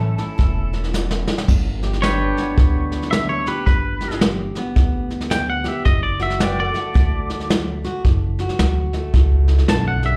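Down-home and heartfelt, this swung honky-tonk and classic country excerpt at 110 BPM opens with a bright pedal steel melody that stops at 0.9 seconds as a drum fill leads into a clean electric guitar solo at 1.5 seconds, carried by full-bodied picked acoustic guitar, woody, thumpy upright bass and up-front vintage brush drums, while a twangy electric guitar second line with slapback and tape echo and a warm pedal steel holding sustained chords join from 2.0 seconds, heard as a live gig through the venue's PA with club reverb.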